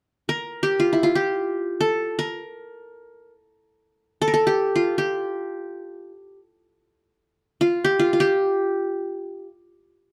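Melancholic and soulful, this Turkish makam excerpt in free time features a solo qanun, plectrum-plucked and bright-edged with the shimmer of triple strings, sitting up front in light reverb as it plays alone from 0.3 to 9.5 seconds in a compact range from E4 to Bb4.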